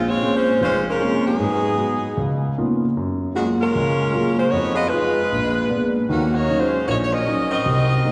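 A saxophone section carries the melody up front, its warm vibrato and ensemble blend setting a dramatic, swinging jazz mood in Bb minor at 153 BPM. A grand piano accompanies throughout, intimate and natural with audible action noise, moving through Bbm9, Abm7, Db13 and Gbmaj9 before Fm7b5 and Bb7b9 lead to Ebm7 at 6.1 seconds. A long concert hall reverb of 2.4 seconds surrounds this short cut from a longer piece, giving it a soft-topped, churchlike space.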